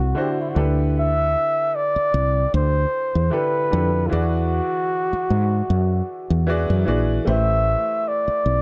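Lush 1970s-style soul at 76 BPM in 4/4, with a gentle swing on the sixteenths and a silky, cinematic mood across this short excerpt of a longer piece. A breathy flugelhorn carries the melody up front from E4 to E5, its whispered, intimate jazz-style tone colored by vibrato, soft attacks and scooped notes. Underneath, a woody fretless electric bass sits prominently between A1 and G#2, growly and punchy with a direct, amped, hollow-body character. A baby grand piano accompanies from D3 to D5 with a clear, somewhat boxy sound, sitting a little further back. The harmony moves from D7 to G69, then to E9 at 4.1 seconds and Am9 at 7.3 seconds, all wrapped in a studio reverb.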